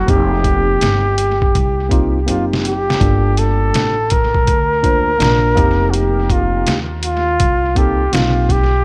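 A breathy, whispered flugelhorn with vibrato and a soft attack and a woody pizzicato upright bass open this nocturnal, cool jazz-hop fragment at 82 BPM, soon joined by a worn, slightly out-of-tune tine electric piano with light overdrive and a gritty, pitched-down sampler-style drum kit with a thumpy kick, which plays a fill from 2.3 to 3.0 seconds before the harmony moves from F9sus4 to Gm9 and back, as tape echo on the horn, keys and drums and a light reverb give the swung mix its hazy, echo-heavy depth.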